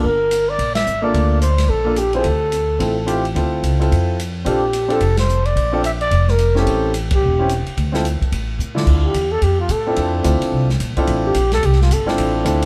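A brisk swing feel in 4/4 drives this cool small-group jazz passage, cut from a longer piece and heard from further back in a room with moderate spring reverb. The upright bass is plucked with a woody, growly tone up front in the low register, while an open acoustic drum kit with dark cymbals, a medium-tuned snare and a boomy kick plays ride, hi-hat, snare, crash and kick at a lower level. A concert grand piano with deep bass and a natural, warm sound supplies accompaniment over harmony that moves from Gm7 through Dm9, Bbmaj7 and A7#9. A close-miked trumpet carries the melody with vibrato and a soft, breathy attack, sounding whispered and intimate. The band hits accents together at 0.7 and 5.1 seconds, and a drum fill at 8.6 seconds leads into a new section where the trumpet takes a solo.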